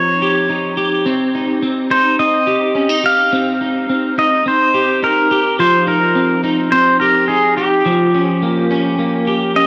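A straight 4/4 pulse carries this ethereal, floating dream-pop fragment from a longer piece, where a clean, compressed pedal steel sings the melody up front with fingerpicked slide lines, volume swells and analog delay over twangy, slightly broken-up electric guitar arpeggios thickened by ensemble chorus and delay, all bathed in a moderate plate reverb on a dry, gritty hardware recording as the harmony drifts from Dbmaj9#11 to Eb9/F.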